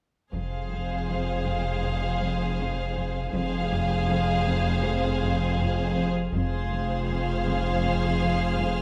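Cinematic and uneasy, this tense excerpt in F minor moves at 80 BPM over a single F minor chord. A violin section holds the melody on a high F while a second violin line sits between Ab4 and C5. Underneath, a very quiet, smooth cello section riffs on F, a portamento-laden cello section and a clear double bass section in the background carry the bass, and a deep, punchy sine sub bass with a pitch-drop attack drones on a low F. At 6.3 seconds a close violin texture enters high in the background, all set in a wet scoring-stage reverb.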